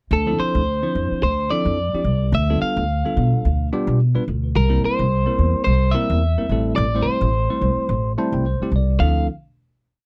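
A slightly broken-up, compressed lead guitar with slapback echo carries a motif-based melody of sung-like phrases through this short, nocturnal and funky electric jazz fusion piece in D minor, moving at 108 BPM with a light sixteenth-note swing. Beneath it, a woody pizzicato upright bass drives a syncopated riff, while a bell-like tine electric piano adds bright funk chord rhythms in drop-2 voicings and plays a fill at 7.9 seconds. The dry, close 1970s-style studio sound keeps every part up front over a Dm9, G9/D, C7 and Am7 progression, and the piece comes to rest on a final Dm9 at 9.0 seconds.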